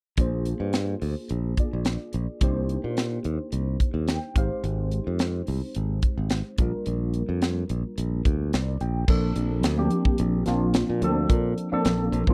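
A crisp, high-tuned snare and punchy kick drive this bright, slick excerpt of electric jazz fusion at 108 BPM in a straight 4/4, with the drum kit sitting up front alongside a growly, direct fingered electric bass. A worn, slightly out-of-tune tine electric piano played through its built-in speakers carries the chords with a phaser. It moves through Bb9, Cm9, Abmaj7 and Gm7/Bb in Bb mixolydian. The electric piano adds short fills at 3.8 and 8.3 seconds. At 9.1 seconds the harmony settles onto Bbmaj9 as the key turns to Bb major. The sound is a dry, close 1970s-style studio recording with little reverb, and the airy, polished cymbals and hi-hat keep the groove sharp.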